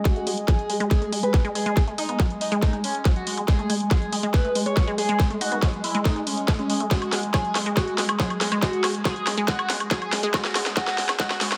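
A straight 4/4 pulse at 140 BPM drives this short psychedelic trance cut, with a tight, up-front electronic kick and a layered drum kit of cracking snare, hi-hat and woodblock running a fill through a hypnotic build-up from 0.1 seconds on, over a G#5 chord and filter sweeps. A gritty, screaming overdriven synth lead carries the melody with distortion, phaser, vibrato and dub echo, while a punchy detuned unison pluck plays a decaying riff that pumps against the kick. Behind them a pulsing gated texture holds sustained chords in the background, and a very quiet, warbling lo-fi pad adds a nostalgic, mellow haze, all set in light reverb.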